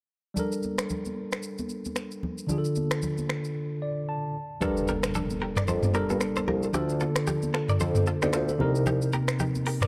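A worn, slightly out-of-tune tine electric piano opens this hypnotic, sultry afrobeats excerpt at 0.3 s, joined by an up-front electronic drum kit of finger snaps, smooth hi-hat, rim click, shaker and toms and by close, dry, high-tuned congas with hard hands, and after a break with an electric piano fill at 3.6 s, a bright, twangy, direct-recorded clean guitar riff with lush chorus and digital delay, a dark, classical-style bassoon bass with light vibrato, and an electronic impact all arrive at 4.6 s, the whole swinging gently under light reverb in a dark production.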